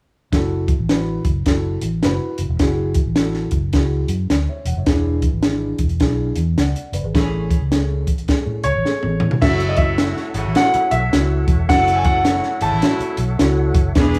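A dark, woody upright piano, a round, foam-muted electric bass and a dry cocktail drum kit with a punchy kick and high-tuned snare open this joyful, swung uptempo 1960s-style soul excerpt at 106 BPM over F#m7 and E7, before a distant, tight jazz horn section joins a band accent at 7.1 seconds, a polished grand piano melody with slapback echo comes up front at 8.6 seconds, shortly before a drum fill arrives, and a fat tonewheel organ with key click and slow rotary speaker sustains chords in the background from 9.4 seconds, in a small, close room.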